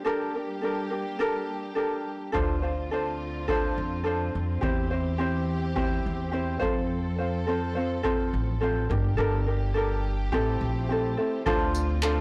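Tender and reflective, this short acoustic pop excerpt in D minor moves at 105 BPM in a straight 4/4, opening with a light, thumb-plucked ukulele up front over a smooth, intimate bowed string section with vibrato, before a woody, growly pizzicato upright bass and a booming, overdriven analog drum machine with a deep kick, handclaps and tambourine join at 2.4 seconds, all in a blown-out recording with light reverb as the chords move from Gmadd9 through Dm7, C/E and F, return to Gmadd9, then pass through Am7 and settle back on Dm7.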